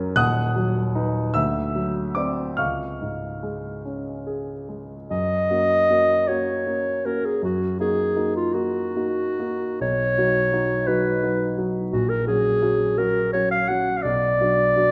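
Serene and warm, this romantic classical duo for clarinet and concert grand piano unfolds at an unhurried 45-58 BPM in a lilting 6/8, counted in dotted quarters, with a freely breathing rubato in F# major. The piano opens alone, its deep bass and rounded tone setting out a gentle harmonic path that touches a D7 chord before settling on C#. At 5.1 seconds the clarinet enters with the melody, a mellow, classical-style solo sitting up front and slightly louder than the piano, which continues its accompaniment below. The harmony moves from F# through D#m/F#, B and F#/A#, closing on a darkening B minor chord at 14.0 seconds as the passage is cut from a longer piece. A lush recital hall reverb, lingering for about 1.8 seconds, surrounds the pair with a sense of space.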